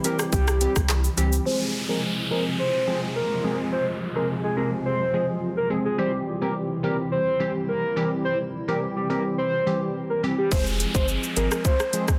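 Dancehall at 106 BPM in F harmonic minor, this hypnotic, bouncy clip opens with an overdriven, up-front electronic drum kit of tight kick, smooth hats, handclaps, rim click and shaker, a very quiet tube shaker and a round sine sub bass, which drop out at 1.4 seconds to leave a soft octave-layered lead with vibrato and delay, a crystalline detuned wavetable pluck with sidechain pumping and a blurred granular cloud pad under a filter sweep and an electronic downlifter, before drums, bass and downlifter return at 10.5 seconds over the Fm chord.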